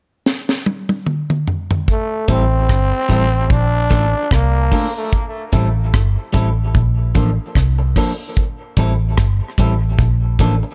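A dry, echo-heavy mix with little reverb opens this short dub reggae excerpt, its mood deep and spacious over a swung 4/4 groove. An up-front acoustic reggae kit with a high-tuned snare and tight kick starts at 0.3 seconds with a drum fill before settling into a groove of hi-hat, kick, rim click, snare and toms. At 1.9 seconds a raspy, growling trombone takes the solo melody, bright and gritty with vibrato and scooped notes, its phrases trailing off into dub echo until 5.1 seconds. Beneath it, a dark, round, foam-muted picked bass sits prominently in the mix, while a compressed electric guitar at the edge of break-up adds picked accompaniment soaked in its own dub echo. From 1.9 seconds the harmony alternates between Am7 and Bbmaj7, deepening the spacious mood.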